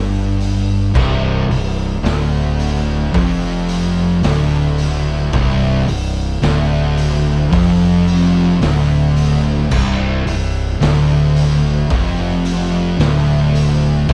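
A dark production with light reverb opens this 14-second excerpt of hypnotic, sludgy stoner and doom metal, crawling at 55 BPM in a straight 4/4. A growly fingered electric bass sits up front, its fuzz and tube-saturated overdrive carrying the low end from C1 to G1. Behind it, two thick fuzz guitars, one dark and one warm, grind through a picked riff between C2 and G2. A brighter, double-tracked distorted electric guitar plays a riff in the same register further back in the mix. A raw garage drum kit comes in at 0.4 seconds with a boomy kick, a medium-tuned snare, hi-hat, crash and dark cymbals, all sounding gritty and saturated in a small, pumping room with a rolled-off top. The whole passage sits on a single C5 power chord.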